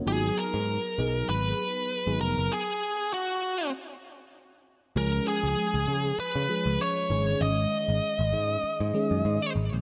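Dramatic and urgent, this 1980s-style pop fragment at 98 BPM with a light sixteenth-note swing sets a biting, overdriven lead guitar melody with tape echo over a growly, up-front picked electric bass and a lush, dreamy FM electric piano with a soft pad layer, treated with chorus and phaser, moving from Abm7 to Db and Absus4, with a stop from 2.5 to 5.0 seconds, all in a light reverb with audible lossy compression artefacts.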